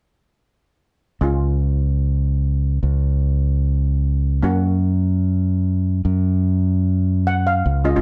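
A straight, bouncy 4/4 calypso groove starts at 1.2 seconds, with a mellow lead pan struck with soft rubber sticks playing accompaniment over a punchy, direct fingered electric bass as the harmony moves from Db to Gb. At 7.3 seconds a bright double-seconds pan played with hard rubber sticks enters with the melody, set in plate reverb. The festive snippet of a longer piece has shimmering, up-front pans in a dark production with light reverb.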